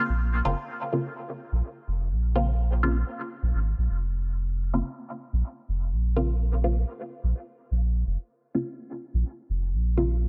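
A muted, resonant chord stab with a detuned, wave-folded edge opens this hazy, hypnotic dub techno excerpt in Bb minor at 126 BPM, its short plucked decay coloured by phaser and dub echo and treated to a filter sweep from 0.7 seconds. A round, mellow sub bass joins at 0.1 seconds, sitting deep and up front beneath the stabs. The whole is framed by a bright, 1980s-style digital ambience.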